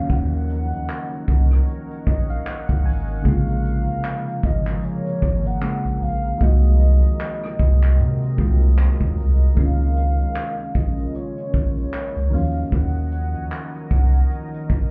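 A loosely swung sixteenth-note feel in 4/4 carries this slow, romantic and dreamy stretch of contemporary R&B, set by a soft brush kit of handclaps, hi-hat, rim click and a punchy kick that sits up front in a distant, roomy acoustic space. Beneath it a round sine sub bass holds the low end, deep and sustained with a fast attack. A gentle electric-piano-like synth keys part, airy and warbling with a vintage chorus tone, supplies the accompaniment and adds a fill between 1.7 and 3.3 seconds, while a very quiet electronic downlifter sounds from the opening until 3.3 seconds. A moody, evolving ambient pad of detuned unison sawtooths with a sub octave holds sustained chords with a slow attack and its own reverb, and a mellow horn-like lead with vibrato and a wave-folded edge sings the melody through chorus and delay. The harmony moves from Ebm9 through Bbm9, Ab7/C and Db69 before returning to Ebm9, and the mix sounds muffled, as if heard through a wall from inside a club.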